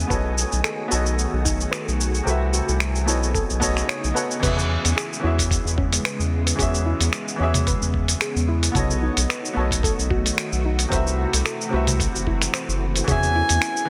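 Smooth and sunny, this sunset chillout excerpt rides a gently swung groove, with a gritty, tape-toned sampler-style kit of congas, shaker, hi-hat, finger snaps and crash sitting up front over a thumpy electronic kick and a deep, round analog bass. A clear but worn grand piano with digital delay and a silky string machine with phaser and ensemble chorus carry the chords, while a soft, chorused pluck plays arpeggios in the background and an airy, wind-like tuned noise texture breathes beneath the opening until 4.4 seconds. At 13.1 seconds a close-miked soprano saxophone enters with a single vibrato-touched note, all under light reverb and a dense, heavily limited master.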